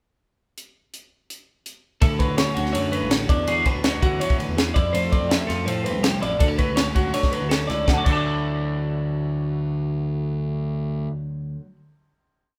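Math rock and midwest emo in a playful, bright mood at 164 BPM, this short piece opens with a crisp fusion drum kit alone at 0.6 seconds: an airy, polished kit with dark cymbals, a high-tuned snare and a punchy kick that breaks the groove. At 2.0 seconds two twelve-string electric guitars enter over chords moving through Dmaj9, E9 and Fmaj7, one clean and twangy with a compressed ostinato, the other up front with a rolling fingerstyle arpeggio, while a fuzz-overdriven electric bass adds a syncopated riff. The band plays live in one large studio room with moderate reverb, settling on a final Dadd9 chord from 7.9 seconds.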